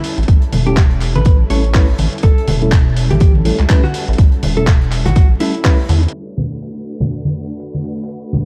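Moody and hypnotic, this deep house excerpt moves at 123 BPM with a 16th-note swing, as a clean hollow-body jazz guitar carries the melody through sampler grit and delay over silky, background string-machine chords, round FM electric-piano stabs with chorus and tape echo, and a rubbery, bouncy square bass sitting up front, with the strings, piano and bass all sidechain-pumping alongside a punchy, layered electronic kick. Gritty sampler-style claps and low-passed hats, bright saturated congas and a very quiet, dry 70s kit with a fat snare fill out the groove inside a dark production dusted with vinyl crackle and studio reverb. At 6.1 seconds the chords shift from A7 to Bm7 as the guitar and bass stop and a filter sweep runs over the drums until 8.4 seconds.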